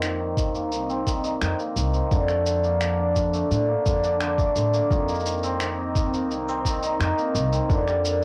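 A home cassette recording with moderate room reverb carries this hopeful, pastoral folktronica fragment, where an up-front, shimmering hammered dulcimer rings out arpeggios through a filter sweep, tape echo and plate reverb over a growly, woody pizzicato upright bass, mellow detuned sawtooth pad chords with chorus in the background, pitched-down, muffled sampler-style finger snaps and shaker, and a thumpy compressed kick drum that enters at 0.4 s.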